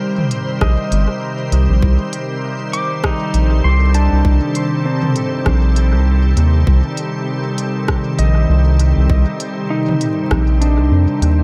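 Ambient dub at 99 BPM in 4/4 with a swung 16th feel, this deep, spacious excerpt in C dorian rests on a single Cm7 chord: a calm, pure, detuned organ-like pad with chorus and built-in reverb opens at 0.0 s, an organic electronic kit of smooth hi-hats, rim clicks and toms with dub echo enters at 0.2 s, and by 0.6 s a tight electronic kick, a round, dark analog bass sitting up front, and a clean, compressed pedal steel guitar played with fingerpicks and slide arrive, the steel tracing echoing arpeggios with volume swells, all beneath light digital reverb and a bed of vinyl crackle.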